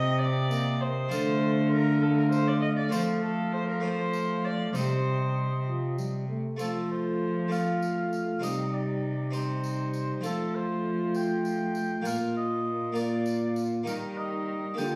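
An oboe with light vibrato carries the melody of this rustic, courtly Renaissance-style consort dance in 6/8. A gut-strung viola plays the second line, an Italian-style harpsichord adds a full, plucked accompaniment alongside a mellow trombone, and an up-front, dark cello holds the bass. A jingly tambourine joins at 0.5 seconds, the tune moves into a new section at 6.6 seconds, and the consort sounds set back in a stone room.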